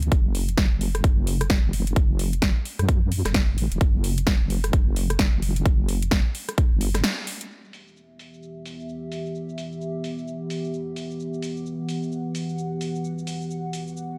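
Bass house at 130 BPM in E minor with a 16th-note swing, aggressive and swaggering, cut from a longer piece and mixed dry. A heavy, saturated wobble bass with detuned sawtooth grit and chorus pumps against a punchy electronic kick, while a big-room dance kit adds a low-passed snare, metallic hats, cabasa and rim click. The kick drops out at 6.7 s and the bass at 7.0 s, opening a short break with a band accent. From 8.3 s a moody analog pad with a sub octave, phaser and sidechain pumping sustains an E minor chord over the drum kit until the end.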